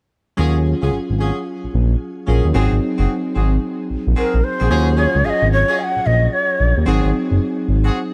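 At 0.4 s a smooth, up-front synth bass, a bell-like, clean tine electric piano and a tight jazz-style horn section with soft-attack stabs bathed in shimmer reverb open this punchy, slick R&B excerpt at 111 BPM with a swung sixteenth feel over Ebm11 and Ab7 in Eb dorian, before a breathy, mellow shakuhachi with expressive vibrato and rolled-off highs carries the melody, also in shimmer reverb, from 4.2 to 6.8 s in a lightly reverberant space.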